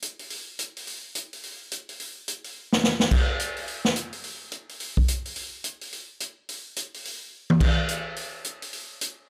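Closely miked and dry, this short excerpt has a detailed, natural studio-room sound with the drum kit placed up front. It is a swinging big-band jazz groove at 214 BPM in 4/4, with a swing feel on the eighth notes and a brassy mood. The acoustic kit carries the whole clip on its own: crash cymbal, hi-hat, a punchy kick, a medium-tuned snare and toms. A drum fill from 2.6 to 3.1 seconds closes the first phrase and launches a second pass through the same section. Another fill arrives at 7.3 seconds, keeping the momentum driving as the fragment ends.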